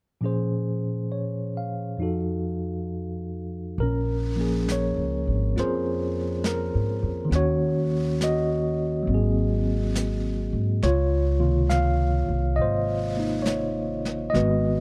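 A clean tine electric piano opens this smoky, melancholic slow jazz excerpt in Bb minor at 0.2 seconds over Bbm7 and F7b9, then at 3.8 seconds a woody, thumpy pizzicato upright bass on gut strings and a soft brushed kit with a medium-tuned snare and hi-hat join at 68 BPM in a swung 4/4, moving through Ebm7 and Ab9 to a Dbmaj13 with piano and bass up front in a dry, close 1970s-style small-room sound.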